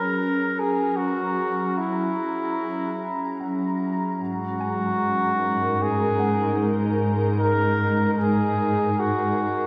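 A serene, free-time ambient passage opens with a warm flugelhorn carrying the melody through a delay, over a glassy, warbling FM pad that holds sustained chords with ensemble chorus, while a felt-muted upright piano plays soft, boxy arpeggios very quietly beneath. At 4.2 s the harmony moves from F#7 to G#sus2, and a dark, lush cello section enters on a bowed bass note with expressive vibrato. The whole is bathed in a wet cathedral reverb, giving a dark, warm production.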